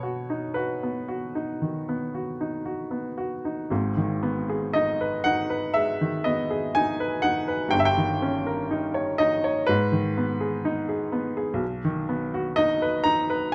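Rubato and unhurried in 4/4, this short excerpt of a romantic character piece for solo piano has a passionate yet hopeful mood, with a clear, natural-toned baby grand sitting up front under close, detailed microphones, its short sustain ringing into a moderate large-studio reverb as the harmony turns from major to minor at 3.7 seconds, passes through a dominant seventh, and returns home at 11.6 seconds.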